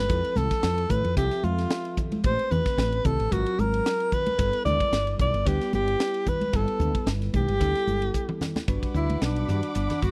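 A dry, close studio sound in a 1970s style frames this slick, funky stretch of electric jazz fusion, cut from a longer piece and moving at 112 BPM in 4/4 with a light sixteenth-note swing in G mixolydian. A breathy alto saxophone carries the melody up front, its clear jazz tone marked by vibrato, soft attacks and scooped notes, while a woody, round fretless electric bass sits equally forward underneath. A crisp fusion drum kit with a high-tuned snare and punchy kick covers hi-hat, ride and toms, joined in the background by bright, hard-handed congas and a bell-like tine electric piano treated with phaser. The harmony travels through Fmaj7, Am9, Ab13 and G69 before a drum fill at 8.1 seconds leads into a new section at 8.7 seconds, where the saxophone takes a solo over Gmaj7. There a chamber string section enters quietly with intimate, bowed sul tasto chords high above, adding a warm layer of light vibrato to the close.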